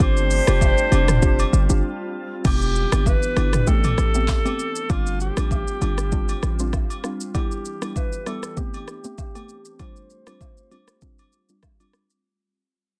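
A lightly swung 98 BPM afrobeats groove in 4/4 rides on a deep house drum kit with a deep kick, smooth hats, claps, rim clicks, shaker, toms and crash, joined by background agogo bells and woodblock and a punchy, heavy 808-style bass that drops out at 6.8 seconds. Over a dark, detuned pluck and a glassy, ethereal FM pad cycling through G7sus4, Em7 and Am9, a breathy alto saxophone with light vibrato carries a sultry, smooth melody, with a distant horn section adding a second line that ends at 2.1 seconds. After a brief break, a filter sweep and fade-out begin at 2.4 seconds, all within a dense, heavily limited, dry modern mix of a longer piece.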